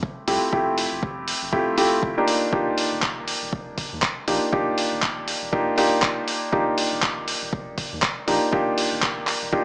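A swung 120 BPM deep house groove in 4/4 opens this relaxed, sunny fragment from a longer piece. A deep, overdriven electronic kick sits beneath gritty, tape-warm sampler-style handclaps and hi-hat, while a round, nasal analog bass enters at 0.3 s and stays dark in the background. Up front, a soft, felt-muted upright piano plays mellow stabs, with audible action noise, sidechain pumping, a low-pass filter and tape echo, moving from Fmaj9 to Ebmaj9 at 2.3 s. The whole track has light reverb and a small-speaker sound.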